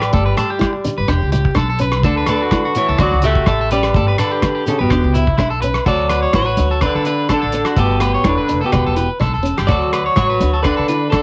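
A joyful, sunny highlife guitar band groove in D major moves at 125 BPM in 4/4 with a lightly swung sixteenth-note feel, cut from a longer piece and running about 11.2 seconds. Up front, a clean, picked electric guitar carries the melody with a cassette-tape coloring, while a second electric guitar at the edge of break-up adds twangy picked arpeggios. Behind them, a clear tenor saxophone with light vibrato and scooped notes plays a smooth, jazz-style second line, and a dark, boxy acoustic archtop guitar provides picked accompaniment. A woody pizzicato upright bass, thickened by tube saturation, anchors the low end alongside a cloth-damped, thuddy drum kit of hi-hat, tight kick and rim click with a rolled-off top. Ringing agogo bells, hard-handed congas entering at 0.1 seconds and a grainy, very quiet shekere entering at 0.2 seconds fill out the percussion, all over a Gadd9, Em and D progression and the vinyl crackle of a small-room home cassette recording.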